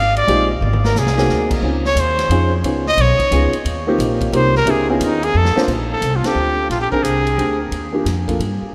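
This small-group jazz piece in a swing-and-bop vein is relaxed and sophisticated, cut from a longer work and moving at a brisk 178 BPM in 3/4 with swung eighth notes. A clear, up-front trumpet carries the melody as a solo from the start until 5.7 s, colored by a light vibrato. A pizzicato upright bass with steel strings lays down a dark, woody foundation, and an upright piano accompanies with an intimate, warm tone and audible action noise. A distant, roomy drum kit contributes dark cymbals, a medium-tuned snare and a boomy kick with a rolled-off top, adding short fills along the way. The harmony drifts through rich ninth and major-seventh chords before settling into Bb major at 5.7 s, and the band punches an accent at 6.2 s, all steeped in a wet cathedral reverb that places the group in a vast, echoing space.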